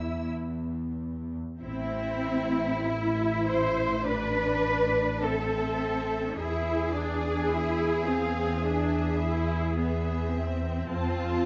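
A clear, focused double bass section sits up front in this elegiac, solemn slow movement for string orchestra, cut from a longer piece and unfolding with rubato in a spacious 4/4. Above it, a smooth, distant cello section reinforces the bass line, while a viola section with a polished top shapes the inner accompaniment. A lush second violin line sits in the background, while the first violins carry the melody with a close, even, warm tone. Every section plays bowed with vibrato throughout, and the opening unharmonized moment gives way at 1.6 seconds to A minor, moving to E7 at 6.4 seconds and F at 10.9 seconds. Moderate scoring-stage reverb and a dark production lend the ensemble a grave, enveloping glow.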